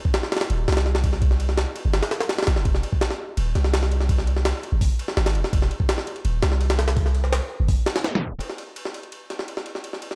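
Dark, dry production frames this nostalgic, frenetic drum and bass passage in jungle style at 167 BPM in 4/4. A gritty, compressed, pitched-up sampler kit, re-recorded in a large room, sits up front with a thumpy kick and high-tuned snare, while a deep, mellow sine 808 bass enters at 0.5 s with long, decaying notes between Eb1 and C2. A tape stop runs from 8.0 s to 8.4 s, where the bass ends, leaving the drums alone until 10.2 s.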